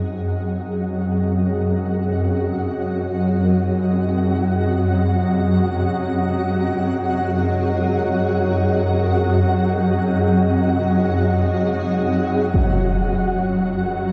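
An ominous, vast dark ambient drone opens on a swarming, detuned low drone placed up front and shaped by a filter sweep, beneath a blurred, cloudy granular pad holding sustained chords and a flickering, grainy texture that fades in over the first 12.5 seconds. At 12.5 seconds a huge, dark impact, muffled by a low-pass filter, lands up front, while the drone, pad and texture carry on to the cut at 14.1 seconds. The mix is bathed in an enormous, long-tailed reverb and the warbling pitch drift of worn cassette tape.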